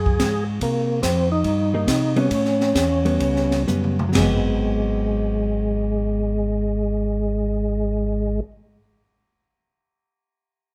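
Soul jazz organ trio music with a swinging, greasy mood, in a short passage cut from a longer piece. A percussive tonewheel organ carries the melody, its full, lightly overdriven tone marked by second-harmonic percussion, chorus vibrato and a slow rotary speaker, sitting up front. A second tonewheel organ plays the bass line, round and mellow with audible key click and its own slow rotary swirl. An acoustic jazz kit in a small room brings dark cymbals, a high-tuned snare and a boomy kick, and the tempo gradually slows as a drum fill leads the kit out at 4.3 seconds. A hollow-body electric guitar, clean, fingered and compressed, enters at 1.7 seconds to comp over chords moving from Cm7 to A9 and then Ab7#9, all in a light reverb.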